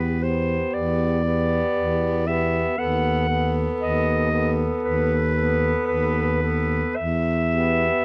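A rubato 4/4 pulse at 58 BPM carries this elegiac, melancholic classical passage for single-reed quartet in E minor, cut from a longer piece: a bright, distant clarinet sings the melody up front, a mellow alto saxophone with vibrato holds a second line in the background, a clear tenor saxophone with a smooth top and light vibrato supplies the accompaniment, and a baritone saxophone with light vibrato anchors the bass up front, all four sounding throughout the 8 seconds as the harmony moves from Em to B7/D# at 2.8 s and back to Em at 7.0 s under light reverb and close, detailed microphones.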